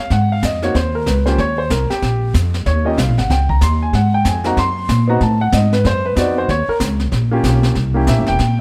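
Sophisticated and relaxed, this short cut from a longer small-group swing and bop performance moves at a brisk 188 BPM in 4/4 with a swung eighth-note feel, centered in Eb mixolydian. A grand piano sits up front in an accompanying role, its natural, warm voicing ranging from Bb3 to C6 over chords that shift from Ab7 to Eb7, then through Adim7 before landing on C7b9. Beneath it, a pizzicato upright bass with steel strings carries the low end from E1 to Bb2, sounding woody, growly and prominent. A brushed drum kit fills out the trio with brushed snare, hi-hat, kick and snare, pairing a high-tuned snare with a boomy kick in an airy, polished studio room. All three parts play together from the opening moments through 8.6 seconds, and light reverb lends the group a gentle sense of space.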